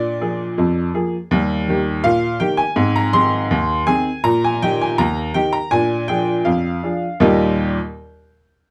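In a straight 2/4 feel, this playful, cheerful ragtime fragment features a lone upright piano, woody, worn and slightly detuned, set up front in a dark production with moderate studio ambience, moving from Bb7 through Eb and Ab back to Bb7 before landing on Eb at 7.2 seconds, with the piano stopping at 7.8 seconds.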